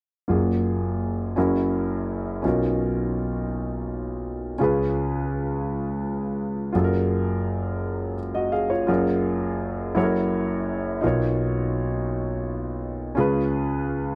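Set in a slow 6/8 with a straight feel, this uplifting, soulful gospel passage unfolds on a solo concert grand piano that plays from 0.3 to 14.2 seconds. The piano sits up front with a warm, intimate, natural tone, a deep bass register, and the faint sound of its action audible beneath the notes. Its harmony moves through lush extended chords, opening on a major ninth before passing through a dominant seventh, a rich major ninth with a sharpened eleventh, and a second dominant seventh. The same chord progression begins again at 6.7 seconds, and a new section starts at 8.9 seconds as it continues. A light reverb surrounds the close, dry, 1970s-style studio sound, and the recording is cut from a longer piece.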